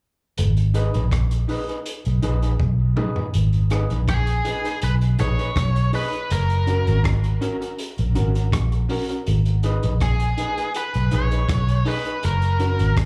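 Roots reggae with a serious, hypnotic mood, this cut from a longer piece sounds like a live gig heard through the venue's PA, soaked in club reverb. A round, foam-muted fingered electric bass sits up front in its low register, paired with a crunchy breakbeat kit whose punchy kick, hi-hat, rim clicks and toms have a rolled-off top, and the drums play a fill at 2.6 seconds. A twangy, slightly broken-up picked electric guitar through a small old amp adds accompaniment with tape echo and slapback, while a boxy, mellow baby grand with audible action noise and short sustain plays stabs through its own slapback echo. At 4.1 seconds a biting, overdriven lead guitar enters with the melody, carrying tape echo and slapback. Underneath, the harmony moves slowly between G# minor and F#.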